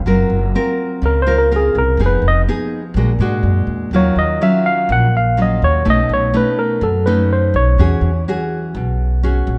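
A dark, moderately reverberant recital-hall sound frames this sophisticated, sunny bossa nova excerpt at 124 BPM in a straight 4/4, tuned to A4 = 441 Hz. A fingerpicked, full-bodied nylon-string guitar and a woody pizzicato upright bass hold the accompaniment up front throughout, moving through rich chords such as Gbmaj7#11, Bbaug7 and Ebm9. From 1.1 to 8.2 seconds, a bright, barky tine electric piano, lightly overdriven through a combo amp, carries the melody.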